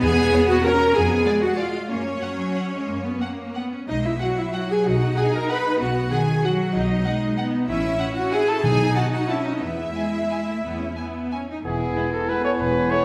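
Heard in a reverberant recital hall, this festive, sweeping classical passage in a rubato triple metre is cut from a longer piece and built on lush bowed strings. A smooth, close violin section carries the melody over a second violin line in the background, with an up-front viola section rich in vibrato, a bright cello section and a distant double bass section, while hard-mallet timpani strike at the start and again at 8.6 s. From 11.6 s the winds and brass join: a mellow oboe and bassoon and a French horn section holding chords in the background, followed at 11.7 s by a vintage clarinet and clear trumpet stabs placed up front.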